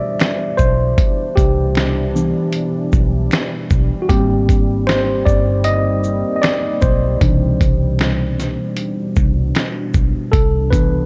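Dark, lightly reverberant production frames this mellow, nostalgic lo-fi hip hop excerpt at 77 BPM with a gentle 16th-note swing in C major, where a worn, slightly out-of-tune tine electric piano plays solo up front over a deep, moody chorused pad, gritty 12-bit sampler drums with a thumpy kick, medium-tuned snare, hi-hat and shaker, a round, punchy foam-muted electric bass entering at 0.6 seconds, and a very quiet finger snap, as the harmony moves from Cmaj9 to Abmaj9 at 4.1 seconds and back to Cmaj9 at 7.2 seconds.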